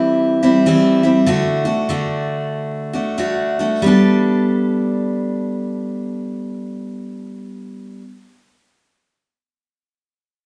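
Drenched in a large studio reverb and captured as a live band in one room, this peaceful, pastoral folk fragment in G major, cut from a longer piece, features a bright, full-bodied picked steel-string acoustic guitar sitting up front as accompaniment at 90-99 BPM with a swung 4/4 lilt, slowing down through its opening 3.8 seconds as it moves from C to D before settling onto a Gadd9 chord.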